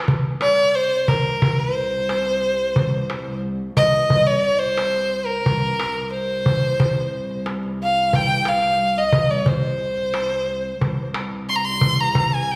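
Arabic maqam ensemble music in C maqam bayati at 89 BPM, soulful and hypnotic, cut from a longer piece, where a clear, focused solo violin with vibrato carries the bowed melody up front across a range spanning Bb4 to C6 over a dark, intimate cello section droning on C2 with light vibrato and sul tasto bowing, while a crisp, vintage-sounding metal-shell darbuka struck with hard hands sits up front, all set in a wet recital hall reverb.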